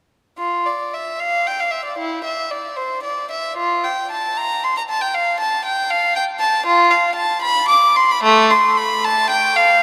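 Serene and dance-like, this short baroque-style classical excerpt is a flexibly timed movement in 6/8 for a single violin, played from 0.4 to 9.8 seconds in period style with an airy, nasal gut-string tone, heard close and up front yet bathed in the long, wet reverb of a cathedral.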